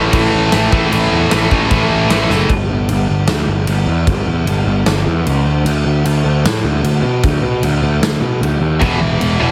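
Upbeat and rebellious, this punk rock excerpt opens with a bright, overdriven electric guitar riff, joined by two tight distorted guitars (one double-tracked in the background), over a growly fuzz bass and a big, natural-sounding rock kit with a tight kick; after a drum fill at 2.3 seconds the guitars drop out and the feel moves to half time, leaving the up-front bass and drums until the guitars crash back in at 8.8 seconds, all with a dry, heavily compressed radio sound.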